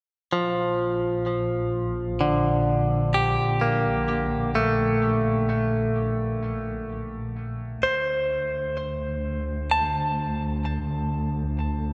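A bright, twangy clean electric guitar plays picked arpeggios up front through tape echo, over a dark, bowed chamber double bass section with expressive vibrato, in this luminous, serene ambient excerpt, set in a vast, echoing cathedral reverb, with the harmony moving from Bb to D5 at 7.8 seconds.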